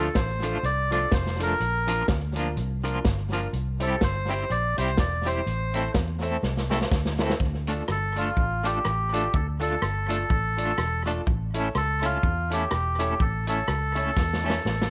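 Mischievous and driving, this ska excerpt moves at 124 BPM in 4/4 with a swung feel, as a reedy, nasal melodica carries the melody up front over bright clean electric guitar with tremolo, woody upright piano stabs sitting in the background, and a dark, round, foam-muted fingered bass. A vintage drum kit with a tight kick, medium-tuned snare, rim clicks and hi-hat enters at 0.2 s, its rolled-off top touched by tape echo, all in a light studio reverb. The harmony moves through Dm, Bb, C and Am before settling into D harmonic minor at 7.4 s, with drum fills marking the turn at 6.4 s and closing the cut at 14.2 s.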